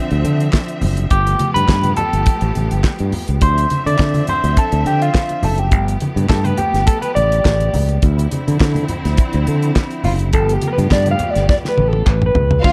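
A small room gives this glamorous, driving disco excerpt its tight, up-front sound. The dry, damped 70s drum kit, with a fat snare and tight kick, joins a growly, bright fingered electric bass, while a clean electric guitar solo rides over sustained chords from a smooth-topped, lush string section that move between Dm9 and G9. A twangy, slightly broken-up wah guitar enters at 1.1 seconds, low-tuned congas and crisp vintage handclaps sit in the background, and after a drum fill from 11.5 seconds a rich, vibrato-laden violin section arrives only at the very end.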